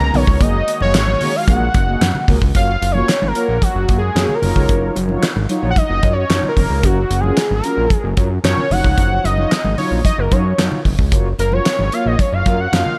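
Smooth and danceable, this early-eighties boogie funk groove moves at 112 BPM in a straight 4/4, set in F# major and cut from a longer piece. A damped 70s drum kit sits up front with a dry, fat snare, tight kick, hi-hat and handclaps, joined by very quiet congas with a thick, compressed, saturated skin sound played with soft hands. Underneath, a thick, detuned sawtooth bass with a fast attack and filter sweep anchors the low end, while mellow synth brass, round and dark with chorus and slapback echo, fills in the accompaniment. A bold, brassy pad holds sustained chords only until 2.5 seconds, when a fat analog lead, detuned with a sub octave, filter pluck, vibrato and analog delay, which has carried the melody from the start, takes a solo through to 13.0 seconds. The harmony moves between F#maj7 and D#m9/F#, all wrapped in light reverb.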